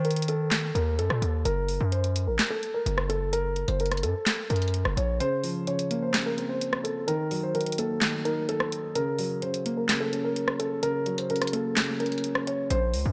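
Lightly reverberant studio sound frames this brooding, melancholic half-time trap excerpt at 128 BPM. A mellow, vintage-toned grand piano carries the delayed melody over an up-front electronic kit with a sharp snare, bright hats, claps and rim clicks. An aggressive, saturated 808 bass with a noisy edge drives the opening, then drops out with the kick at 5.2 seconds while a boxy lower piano plays Bbmadd9, Ebm and Gb chords, until the bass returns at 12.7 seconds.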